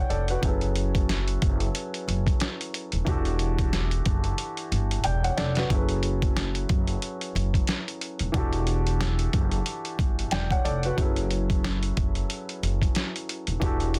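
A dry, dense and heavily limited mix frames this reflective, dark boom-bap hip-hop excerpt, built on a swung sixteenth-note feel. A gritty, compressed sampler-style drum kit sits up front with a thumpy kick, medium-tuned snare and hi-hat, alongside a pizzicato upright bass with a steel-string, woody tone. Behind them, a warm upright piano with long sustain and a cassette-tape colour plays accompaniment, and a drum fill from 4.4 to 5.7 seconds leads into the repeat of the opening section.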